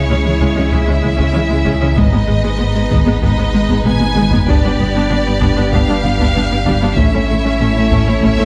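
A lush string orchestra opens this vast, futuristic cue from a hybrid orchestral and electronic film score at 96 BPM, its rich violin melody riding over a smooth second violin line, expressive viola with portamento, and soft-attacked cellos and woody double basses in the background, while mellow French horns hold chords. A very quiet, detuned sawtooth synth drives tight arpeggios, and a deep, round sub bass anchors the low end. Heavy-stick taiko enters at 0.4 seconds with a fill from 3.9 seconds, as the harmony moves from C# minor through G# minor and G to A in a moderate scoring-stage reverb.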